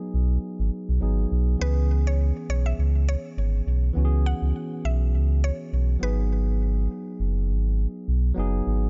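A lightly swung sixteenth-note groove at 102 BPM in 4/4 drives this short afrobeats excerpt, which has a hypnotic, smooth mood in C# minor, tuned slightly flat to A4 = 438 Hz. A deep, full sub bass with an added octave sits up front almost from the first moment, its sine-and-triangle tone mellow and sustained with a fast attack. Alongside it, a warm, clean, direct tine electric piano carries the accompaniment through the whole passage, moving from G#m7 to C#m7 at 1.6 seconds and back to G#m7 at 6.0 seconds. The melody comes from a mallet-like FM synth pluck, woody and round with a percussive noise layer, which enters at 1.6 seconds and stops at 6.2 seconds, its bright, decaying notes colored by chorus and tape echo while sitting quietest in the mix. The overall sound is dry and dark-topped, with very little reverb and the highest frequencies rolled away.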